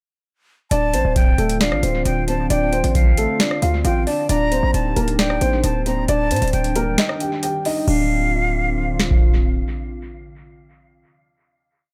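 A booming analog drum machine sits up front in this brooding, menacing trap piece, its deep kick, crisp snare, metallic hats, rim click and crash cymbal laying down a half-time beat with fast hi-hat rolls, all carried in dub echo. A hard-hitting 808-style bass adds punchy, saturated sub-bass notes that decay and slide in pitch. Over this, a dark concert grand piano plays a mellow, somewhat boxy looping melody doubled in octaves, while an airy, close-miked concert flute adds a sparse counter-melody with vibrato; both repeat like sampled loops and carry dub echo. Beneath them, a detuned sawtooth analog pad with a sub octave and a slow attack holds moody sustained chords treated with chorus and phaser. The mix is dry on reverb but heavy with echo, and the kick drops out at 7.0 seconds before the hook gives way to a final chord that the pad sustains until 11.1 seconds, outlasting the other parts.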